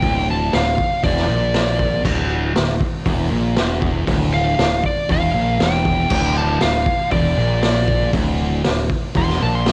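A dry, home-taped cassette sound frames this gritty, swaggering garage rock fragment in D minor, cut from a longer piece and moving at 118 BPM in straight 4/4 over a Dsus2 chord. A dark, compressed fuzz lead guitar solos up front through all 9.7 seconds, over a bright, double-tracked fuzz guitar riff and a growling, overdriven fingered bass heard direct and amped. Underneath, a raw acoustic kit from a small room, saturated and gritty with a rolled-off top, pushes a punchy kick, medium-tuned snare, hi-hat and crash.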